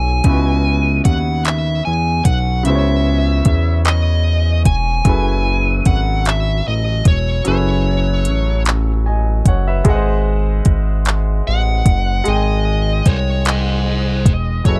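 Slow R&B in six-eight with a sultry, late-night mood, this excerpt from a longer piece rests on a dark production where a saturated, evolving synth bass blending sawtooth and square tones with vibrato sounds from the opening, and an up-front electronic drum kit of soft kick, metallic hi-hat and handclaps enters at 0.2 seconds. A clear concert grand piano with deep lows and plate reverb supplies the accompaniment, while a bright, overdriven electric guitar carries the picked melody. The harmony moves from C#m11 to F#m11 to G#7.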